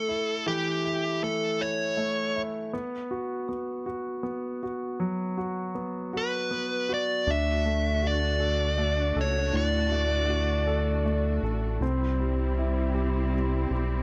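This is a swaying, romantic pop excerpt in 6/8, moving at a slow 53 beats per minute counted in dotted quarters with a straight feel, in D major. A clear concert grand piano carries the accompaniment throughout, sounding intimate and polished with long sustain, deep bass and audible action noise. A dark, overdriven electric lead guitar, picked and up front, states the melody briefly at the start, pauses, then returns at 6.2 seconds. At 7.3 seconds a lush, bowed symphonic string section enters with sustained chords full of vibrato, joined by a round analog bass that is deep and up front with a fast attack. The harmony moves from A7 through B5 to D and then C, all set in light reverb with a studio ambience.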